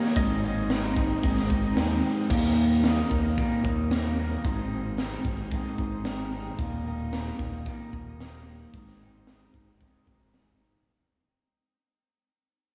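Psychedelic rock at 112 BPM in a straight 4/4, this hypnotic, kaleidoscopic excerpt is cut from a longer piece and moves between Ab and Eb chords. An electric guitar through a small old amp carries the riff up front, its twangy, slightly broken-up picked tone run through a phaser, while a raw garage drum kit sits close by with a punchy kick, a high-tuned snare, hi-hat and crash, sounding gritty and saturated in a stone room with a rolled-off top. A modern fingered electric bass enters at 0.2 seconds with a growly, direct edge. A reedy tonewheel organ holds sustained chords very quietly through a slow rotary speaker, and a clean lap steel guitar plays a brief slide melody in the background for the opening 1.7 seconds, swimming in lush chorus and diffuse ambient delay. The whole mix is soaked in a huge, dreamy reverb, and it fades out from 2.3 seconds onward.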